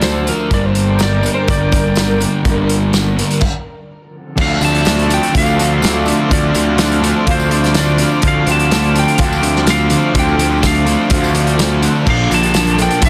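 Dense and heavily limited with little reverb, this hazy, dreamy cut from a longer shoegaze and dream pop rock piece moves at 125 BPM in a straight 4/4, centered on D minor. The fuzz-picked electric bass sits up front with a growly, overdriven edge, beside a loose indie drum kit of tight kick, medium-tuned snare, hi-hat and dark crash cymbal, while a faint, jingly tambourine rides along. A thick fuzz guitar riff fills the background, joined by a dark, clean, very quiet electric guitar riff, with a boxy, shimmering, octave-doubled twelve-string acoustic guitar fingerpicking arpeggios, its finger squeak faintly audible. Over them, a slightly broken-up lead guitar carries the melody through tape echo, and a lush, warbling, detuned unison pad holds sustained chords under chorus. After a stop from 3.4 seconds, a bright, double-tracked overdriven guitar joins with its own riff at 4.4 seconds as the harmony shifts from Dm7 toward a closing Bbmaj7.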